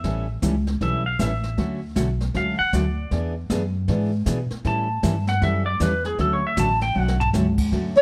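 Lightly reverberant and close, this cheerful, swinging western swing excerpt features a bright, twangy clean lap steel guitar carrying the slide melody with volume swells over a full-bodied picked jumbo acoustic guitar, a woody, thumpy pizzicato upright bass and a brushed jazz kit with dark cymbals and a boomy kick, which plays a fill at 7.0 seconds, before a mellow clarinet with subtone and vibrato sounds a single note at 8.0 seconds.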